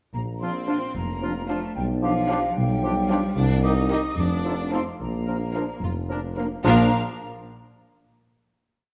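A playful, whimsical cinematic cue in a lilting 6/8, mischievous and quirky in mood, running to a held final chord from 6.7 seconds. The violin section carries the melody with lush vibrato while a second violin line and the violas fill in pizzicato figures and sustained chords. An airy, crisp flute group adds an expressive second line, while a warm cor anglais, clarinet, dark bassoon and mellow French horns add after-beat chords, and the cellos, double basses and an up-front, clear tuba anchor the bass under a moderate scoring-stage reverb.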